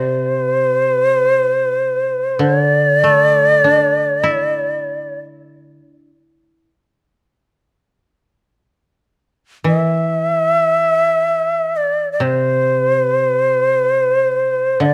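Close, detailed and lightly reverberant, this calm, austere fragment of Japanese chamber music in free time sets a breathy, bright, reedy shakuhachi up front carrying the melody with vibrato and a chiffy, tongued attack, while a dry, woody koto plucked with fingerpicks accompanies lower and softer through the full 14.9 seconds.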